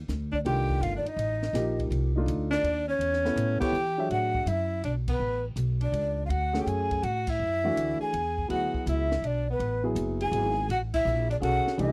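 Modal jazz in a brisk 3/4 at 164 BPM with a swung eighth-note lilt, this cut from a longer piece feels searching and spiritual, shifting from Eb lydian to D lydian at 4.1 seconds as the harmony moves from Ebmaj9 through A9 to D69. A woody, growly pizzicato upright bass sits up front from the start, joined by a compact cocktail kit with a punchy kick, a high-tuned snare, hi-hat and dark crash and ride cymbals. A breathy, hollow flute with vibrato carries the melody, sounding both close and slightly distant, while a clear alto saxophone with light vibrato and a soft attack traces a second line below it. A dark, mellow baby grand piano supplies accompaniment, dropping out briefly after 4.5 seconds before returning at 6.5 seconds. The full band hits several accents along the way, and the dry, close 1970s-style studio sound keeps every part intimate and present.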